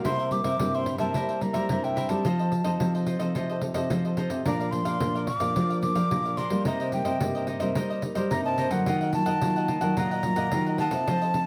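A nostalgic, yearning samba-choro excerpt at 109 BPM opens with a mellow, picked cavaquinho, a full-bodied fingerpicked nylon-string guitar, a deep thumb-plucked nylon-string bass guitar and a jingly, close pandeiro played with soft hands, joined at 0.1 seconds by an airy, up-front wooden flute melody with vibrato and a crisp attack, all moving through chords from C7 and F7 to Bb, Cm7 and Ebmadd9 in a moderate studio reverb.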